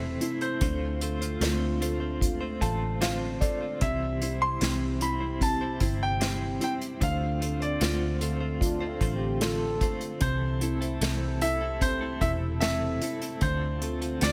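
A bright concert grand piano carries the melody of this melancholic, heartbroken pop ballad from the start, over a soft felt-muted upright piano, a smooth analog pad with chorus, a clean direct-recorded electric guitar picking tremolo-treated arpeggios, and a round, foam-muted fingered electric bass, with an airy acoustic drum kit played with bundle sticks entering at 0.2 seconds. The felt piano adds a fill between 2.2 and 3.8 seconds, and a clear French horn section with light vibrato plays a brief second line from 8.6 to 10.0 seconds. Light reverb and a studio ambience frame this short section, cut from a longer piece.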